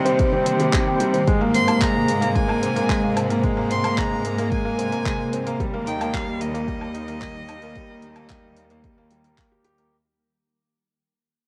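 Piano and strings electronica with a moving, melancholic feel, cut from a longer piece and opening on a drop over a Cm, Abadd9 and Eb progression, with a fade-out beginning at 1.3 seconds. An up-front, felt-muted upright piano plays a soft, intimate riff with audible action noise, while a bright, intense cello section carries the bass with vibrato, and a cloudy, granular pad holds blurred, evolving chords in the background with built-in reverb and sidechain pumping. Overdriven deep house drums with handclaps, hi-hat and woodblock pair with a deep electronic kick, and from 1.6 seconds a rich, boxy solo violin sings an expressive melody with vibrato and portamento, all wrapped in a cassette home-recording sound and a moderate booth ambience.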